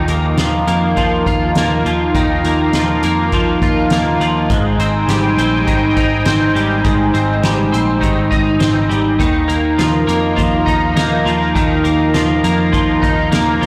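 A steady, straight 4/4 pulse at 102 BPM carries this ethereal, floating dream pop excerpt, cut from a longer piece and set in a small, wet room that the whole recording pushes into a blown-out, overdriven haze. The soft-mallet drum kit enters at 0.1 seconds with hi-hat, a boomy kick and a fat snare that sound as if played in a big room. Beneath it, a vintage muted picked electric bass gives a dark, round, foam-muted low end with transformer saturation. Up front, a bright, twangy twelve-string electric guitar plays clean, compressed arpeggios through ensemble chorus and tape echo. A swirling, detuned sawtooth analog pad holds slow-attack sustained chords with phaser and chorus, moving from Ebsus2 to Abmaj7 at 4.5 seconds and back to Ebsus2 at 9.2 seconds.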